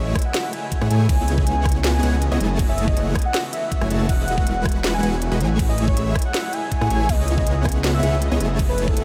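A half-time future bass groove at 160 BPM in 4/4 rolls forward on a knocking electronic kick and a trap kit with a sharp snare, crisp hi-hats, rim clicks and crash cymbals, both entering at 0.2 s. Beneath them, a thick, detuned saw bass sits up front with a mellow chorus and sidechain pumping, while a huge, full-bodied supersaw riff, compressed and airy with vibrato and delay, pumps with the kick. A velvety synth lead carries the melody on top, smooth and chorused, roughened by vintage 12-bit sampler grit and trailed by an analog delay that also breathes with the sidechain. A very quiet, shimmering ambient pad holds ethereal, granular sustained chords in the background, moving through Amaj7, C#m9, F#m9 and Emaj9 before circling back. The mood is euphoric and bright, set in light digital ambience, and this short section is cut from a longer piece, running to 9.0 s.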